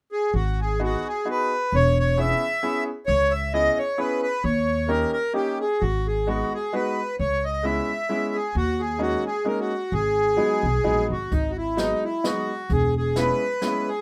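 A reedy accordion with slow beating opens this whirling, bittersweet musette waltz in G# minor, carrying the melody up front at 131 BPM in a swung, rubato 3/4. Close behind come a thumpy pizzicato upright bass with steel strings and a bright, woody upright piano filling in the harmony, all under light reverb. At 11.3 seconds a brush drum kit with a boomy kick joins as the section repeats, before this cut from a longer piece ends at 14.0 seconds.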